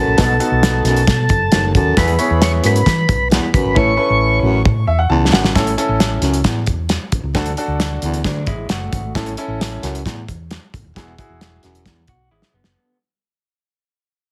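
Joyful uptempo 1960s-style soul at 134 BPM in A major, cut from a longer piece, where a clicking tonewheel organ with a slow rotary speaker and tape echo carries the melody over a dark, soft-mallet vibraphone line for the first 4.4 seconds, while a mellow baritone saxophone riff with vibrato, a round hollow-body fingered bass, an intimate baby grand piano with audible action noise and a brief fill, and a cloth-damped, thuddy drum kit with fills drive on as the heavily compressed, radio-like mix fades from 5.6 seconds, with a slightly broken-up lo-fi electric guitar with harmonic tremolo slipping in briefly around 8 seconds and again at the very end.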